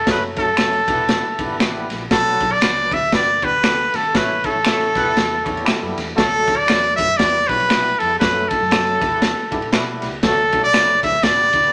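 Uptempo 1960s-style soul at 118 BPM with a swung, danceable feel, cut from a longer piece, led by a bright, up-front trumpet melody with light vibrato and scooped notes over a barky, overdriven tine electric piano with medium tremolo. A gritty, saturated garage drum kit with a punchy kick and dark cymbals drives the groove, while a round, foam-muted fingered bass and finger snaps sit in the background. A clear, tight horn section slips in briefly around 4.7 seconds during a band accent, all bathed in a wet studio reverb.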